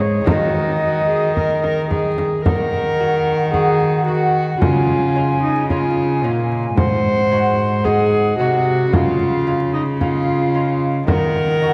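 A courtly, rustic renaissance-style consort dance in Eb dorian at 111 BPM opens with every part sounding at once: a pure, woody alto recorder with soft chiff and vibrato carries the melody over a reedy, gut-strung viola second line and a rich, close, bowed cello bass sitting up front, while a bright, delicate fingerpicked lute with doubled strings stays in the background and a dry frame drum plays until 11.3 s, all set in a long church reverb and a dark production with vinyl crackle, the chords moving from Ebm through Db and Ab7 back to Ebm in this short cut from a longer piece.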